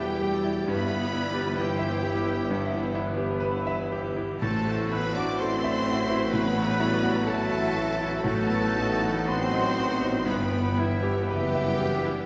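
Classical orchestral music in E minor, brooding and passionate, moving at a slow, rubato 58-67 BPM in 4/4 across this 12.3-second excerpt cut from a longer piece. A clear, intimate grand piano sits up front carrying the melody, its action noise audible, while a lush symphonic violin section with soft attack and expressive vibrato shares the melody high above. Second lines come from a studio violin section in the background, a pure, straight-toned flute section, a distant clarinet and a gently vibrato oboe, with a mellow bassoon and an intense viola section filling the accompaniment. French horns and trombones hold soft sustained chords, a dark trumpet adds quiet stabs, and the bass is anchored by a focused double bass section, a smooth cello section and a roomy tuba. The harmony moves from Em through F#m7b5/A and B7/A before settling on Em/G at 10.3 seconds, all heard from further back in a reverberant concert hall.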